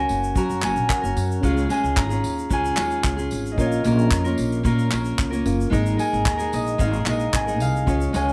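A straight 4/4 pulse at 112 BPM drives this easy-going, heartfelt acoustic pop passage, cut from a longer piece. It moves through Gb, Db, Bbm and Absus2 in a moderate small room. A ringing, thumb-plucked concert harp carries the melody through plate reverb, over a fingerpicked dreadnought guitar sitting up front and a reedy electric piano with fast tremolo tucked in the background. A woody pizzicato upright bass anchors the low end, and from 0.1 s an airy, polished unplugged kit with a punchy kick, handclaps and tambourine enters alongside a grainy tube shaker.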